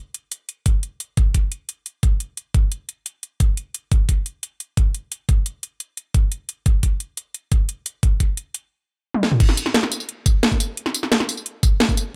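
A tense, futuristic drum and bass excerpt at 175 BPM opens at 0.1 s on an up-front, layered electronic kit of cracking snare, metallic hi-hats, crash cymbal, tambourine and toms, joined at 0.7 s by a knocking electronic kick with a tape-warm, small-room character, all kept dry and close until a drum fill leads into the drop at 9.4 s.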